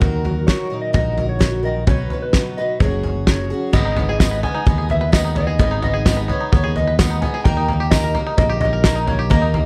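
A straight 4/4 pulse at 129 BPM drives this wistful, bittersweet indie folk excerpt in G# minor, where an up-front, loose drum kit with a fat snare, punchy kick and dark cymbals anchors a fingered electric bass, a clean electric guitar melody with tremolo, a boxy, shimmering octave-doubled twelve-string acoustic and a background fingerpicked steel-string acoustic that stops at 5.6 s, while a twangy bluegrass banjo adds arpeggios from 3.7 s and a jingly tambourine joins softly at 4.2 s as the arrangement builds in a dry mix.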